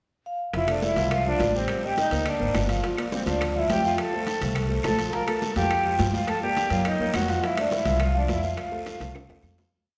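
This short Afro-Cuban jazz piece in F major moves at a brisk 209 BPM in a straight 4/4, with a sophisticated, sunny mood. During a brief pickup, a mellow vibraphone played with soft mallets enters, carrying a free-flowing melody with a medium motor vibrato, while a breathy, bright jazz flute adds a reedy second line in octave doubling. A piano with a deep low end plays a montuno in octaves, and an up-front, woody upright bass drives a tumbao that anticipates the chords, which move from Fmaj7 through Cm9, Bb13 and Dm11 before passing through Gm7 and a colorful Gb back to Fmaj7. The percussion sits mostly in the background: thick-skinned congas with slaps and open strokes, ringing metal-shelled timbales with shell pattern and bell, tight bongos in steady eighths with hand bell, a raspy guiro, and a very quiet clave time line. A lush, reverberant hall sound surrounds the band, and the piece fades out from 7.9 seconds, with a drum fill from 9.0 seconds closing it at 9.7 seconds.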